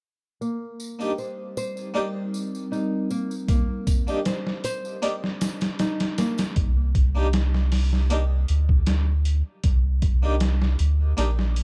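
Lightly swung, pitched-down sampler drums with a thumpy kick arrive at 3.5 seconds in this dark, melancholic trip hop excerpt. A soft tambourine and fingerpicked nylon-string guitar arpeggios with tape echo open the passage, soon joined by a warbling, detuned lo-fi pad, with both guitar and pad under filter sweeps. A plucked harpsichord with tremolo and grainy 12-bit texture carries on throughout, and a deep, round dub sub bass enters up front at 6.6 seconds.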